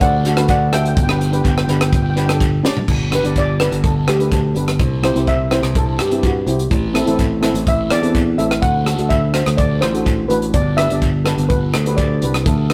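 A rough rehearsal-room recording with moderate stone-room reverb frames this sunny, carefree calypso in G major at 125 BPM, cut from a longer piece. A mellow steel pan carries the melody over a second, darker and smoother steel pan playing accompaniment, while a growly, punchy fingered electric bass and a dry compact cocktail drum kit with a high-tuned snare and dark cymbals sit up front, and a raspy guiro stays in the background. After a drum fill at 2.6 seconds, the lead pan moves into a shimmering solo from 2.9 seconds to the end as the chords travel from D and G through C, Am and D to a closing G6.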